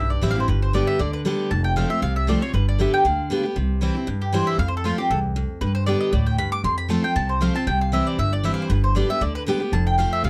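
A bright, picked mandolin carries the melody up front in this short, lively cut of driving bluegrass, taken from a longer piece and set at a brisk 234 BPM in G mixolydian. Beneath it, a full-bodied dreadnought steel-string guitar supplies picked accompaniment while a growly, thumpy pizzicato upright bass anchors the low end, all three playing together from start to finish. The chords move between G, F and C across two passes of the same section, captured by close, detailed microphones in a dry, intimate sound.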